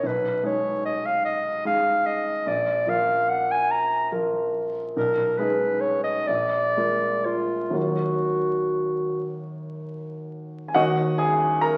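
A mellow, soft-edged clarinet carries the yearning melody up front until 9.3 seconds, sung in a classical style over an intimate grand piano whose action noise is audible and which carries on alone to 11.8 seconds. This elegiac romantic duo in Eb minor moves in a slow, rubato 6/8 at roughly 39-52 dotted-quarter beats per minute, its harmony passing through Abm/Cb and Bb7 before settling on Ebm. A wet recital hall reverb and the crackle of a very old 78 rpm record frame this short passage cut from a longer piece.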